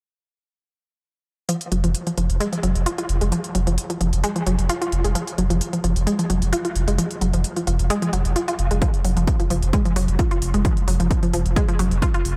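Pulsing straight 4/4 at 131 BPM, this hypnotic, intense excerpt of driving peak-time techno in F phrygian sets a round, detuned sawtooth analog pluck riff with chorus, tape echo and sidechain pumping up front over smooth, pumping electronic hi-hats and a deep, thick saturated sine sub bass holding F1 through tube saturation and a low-pass filter, while a filter sweep runs across the synth arpeggio from 1.5 seconds and a heavy, tape-warm electronic kick drum lands up front at 8.8 seconds, all in light digital ambience.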